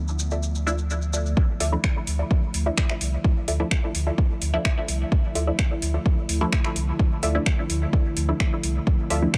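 A deep, nocturnal dub techno excerpt in D dorian at 128 BPM opens on a warbling, nostalgic pad with chorus and sidechain pumping over a round sine sub bass, as grainy maracas, a lo-fi dusty pluck riff with dub echo, and a filtered chord stab sweeping through phaser and 12-bit grit gather, before an overdriven, up-front kick drops at 1.4 seconds and a deep house kit of metallic hats and finger snaps follows at 1.6 seconds, in a dry mix.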